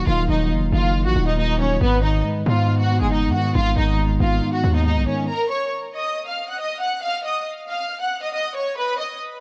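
Tense and ominous, this brief drill hip hop excerpt in half-time feel sets a lush, vibrato-rich violin section up front over a mellow tine electric piano and a punchy, heavy 808-style bass with a fast attack, the piano and bass dropping out near 5.3 seconds to leave the filtered, delayed strings alone in a small room until the cut at 9.2 seconds.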